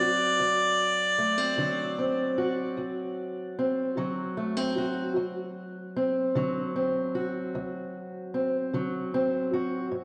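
A mellow, scooped harmonica with tongue slaps and a distant, diffuse delay opens this swaggering, gritty acoustic country blues fragment over a dark, woody, boxy fingerpicked steel-string parlour guitar on old strings, sounding a D7 in D mixolydian at a slow 50 BPM in 12/8; the harmonica falls away at 2.3 seconds while the guitar carries on to 10 seconds, all soaked in a lush, dreamy hall reverb with a dulled top end.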